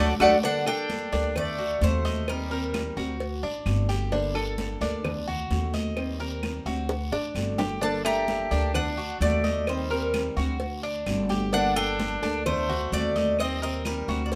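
A drum fill and a band accent open this sultry, danceable excerpt of Cuban son and guajira in G harmonic minor, moving at 130 BPM in a straight 4/4. Up front, a bright, metallic Cuban tres carries the melody, shadowed by a clear, punchy trumpet with scooped notes as a second line. Both drop out at 3.2 seconds and return at 7.8 seconds, while a second tres, with its double strings, keeps picking arpeggios beneath. A dark, boxy fingerpicked ladder-braced acoustic guitar with old strings supplies accompaniment, while a thumpy pizzicato upright bass sits prominently underneath. Behind them, ringing high-tuned congas, tight bongos and cowbell, saturated claves and a raspy guiro fill out the percussion, and another drum fill arrives before the melody comes back, all over a cycling progression of Gmadd9, D7 and Eb6 in light reverb.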